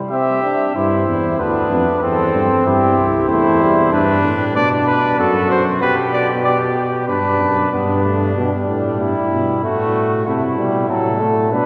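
A mellow trumpet with light vibrato carries the melody from 0.1 to 7.7 seconds, sounding distant and roomy in a joyful, stately classical canzona for brass ensemble, an imitative piece in C major at 94 BPM in a straight 3/4. Beneath it, a close-miked flugelhorn plays a clear, present second line throughout, while a bass trombone with a smooth top and its own light vibrato sits up front, giving the low end a warm weight. A clear trombone, also set back in the room, supplies accompaniment, pausing at 3.9 seconds and returning at 7.7 seconds as the second section begins. The harmony opens on C, moves through G and F#dim, then turns toward Em/G, Am and F#m/A in the later passage. A wet cathedral reverb with a long 5.2-second decay bathes the ensemble, and the recording is cut from a longer piece.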